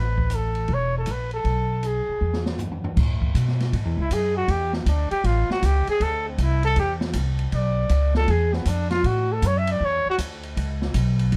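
Small-group swing and bop jazz at 158 BPM in A major, this sophisticated, playful excerpt swings its eighth notes over chords that move through Amaj9, Dsus2 and E7b9. A warm, roomy trumpet with light vibrato carries the solo melody until 10.2 seconds, over a woody, thumpy pizzicato upright bass sitting up front. An acoustic drum kit with dark cymbals and a boomy kick plays a fill from 2.2 to 3.0 seconds, all in a dry, dark production.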